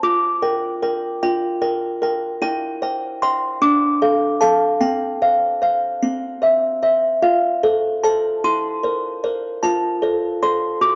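A lone music box opens the recording, its plucked tines sounding delicate and tinkling yet surprisingly dark and smooth, as if from a large box placed up front. This is a classical lullaby in a gentle 6/8 with a straight feel, and its mood is innocent and dreamy. The music box plays solo throughout, ranging from C4 up to D6. The harmony moves from Gm7 over F through C/E, Dm, Csus4 and C, then settles on F, passing through C7/E before resolving home to F at 9.6 seconds. A wet spring reverb with a long tail surrounds the instrument, and the home cassette recording rolls off the highest treble, giving the sound a soft, hazy cast. Tuned slightly low at A4 = 439 Hz, this 11-second passage is cut from a longer piece.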